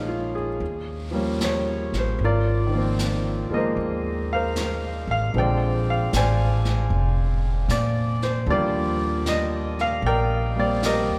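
Bathed in a moderate cathedral-style reverb from a church or concert hall, this tender, romantic swing jazz excerpt pairs an intimate, up-front baby grand piano, clear with audible action noise and long sustain, with a woody pizzicato upright bass, while a distant, roomy brush kit of snare and hi-hat joins at 0.6 s as the harmony moves from Bbm7 through Ab69 and Bb9 to Ebmaj9.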